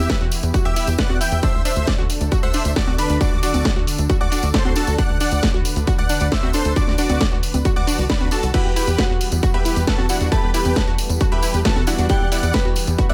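Uplifting trance with a soaring, bittersweet mood, where a huge, thick supersaw melody and a plucky background lead ride sidechain pumping and dub echo over a lush phased pad, punchy pluck arpeggios, a tight, driving sequencer bass, an up-front distorted kick, a techno kit of congas, crash, hi-hat and cracking snare, and a jingly tambourine, all fairly dry, joined by a crystalline FM bell at 8.5 seconds as the chords return from D to Emadd9.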